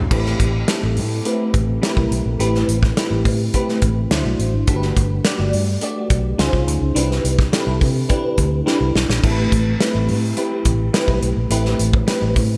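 A bell-like FM electric piano and a dark, foam-muted electric bass open this breezy, glossy slice of polished 1980s jazz-funk pop, with a modern studio drum kit joining at 0.1 seconds in a straight 4/4 feel. The sparkling, warbling electric piano sits up front in the accompaniment, its fast-attack, decaying tones colored by phaser and ensemble chorus, and a noise layer adds vintage FM character. Beneath it, the round, punchy bass carries an amped, muted tone in the low register. The punchy kick, medium-tuned snare, hi-hat and crash cymbal sound up front, with gated reverb and a pumping room sound on the kit, and a drum fill arrives at 8.7 seconds. The harmony moves from Am7 through D7, Gmaj9, C#maj9 and Cmaj9 before returning to Am7. A lush hall reverb and small room ambience wrap the bright, digital production of this excerpt, which is cut from a longer piece.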